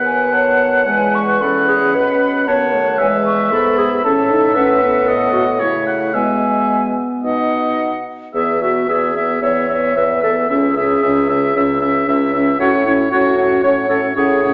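A silver concert flute, pure and crisp in attack with expressive vibrato but set distant, carries the melody of this cheerful, graceful classical-period wind quintet movement in E major at a quick 112 BPM with a rubato feel, over an up-front, vintage-toned oboe second line with soft attack, clarinet and smooth-topped French horn accompaniment, and a bassoon bass with light vibrato, heard in a wet recital hall reverb as the music moves into a new section at 8.3 seconds.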